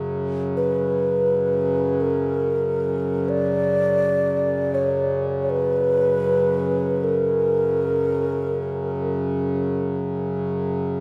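A wet cathedral reverb with a long 4.7-second decay surrounds this spacious, free-time meditative world piece, cut from a longer work and tuned to A4 = 436 Hz. Up front, a reedy, nasal hand-pumped harmonium holds a dark, breathing drone low in its register from start to finish. A close-miked bamboo low xiao enters at 0.6 seconds with an airy, mellow melody, its soft attack and straight tone trailed by tape echo until it stops at 9.9 seconds.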